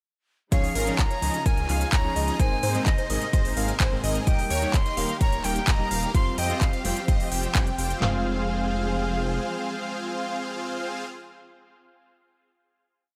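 Festival progressive house in F minor at 128 BPM, this short, powerful and emotional piece opens straight into a drop where a breathy, chiffy jazz flute sings hook phrases through tape echo until 7.3 seconds, over huge detuned supersaw chords pulsing with sidechain pumping, a thick, saturated saw bass driving eighth notes, a background plucky lead doubling the chords in unison, dotted-rhythm chords from a clean, dark electric guitar, a veiled con sordino string pad, and a punchy four-on-the-floor house kit layered with crisp hats and claps, before the drums drop out at 8.1 seconds and the remaining parts settle onto a final F minor chord that rings to 11.8 seconds.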